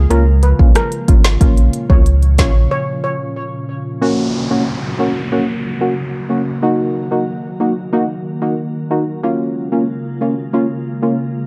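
A glassy FM pad with ensemble chorus and a deep, full sub bass open this sunny, summery dancehall excerpt in F# major at 92 BPM, joined at once by a shimmering, close-miked steel pan melody with tape echo, a mellow, chorused chord stab that pumps alongside the pad, and an up-front electronic afro-pop kit of woody snare and crisp hats, before the drums and bass drop out by 2.7 s for a break that leaves pad and stab, along with the pan's last notes until 3.2 s, carrying the dark production, with an electronic downlifter arriving at 4.0 s.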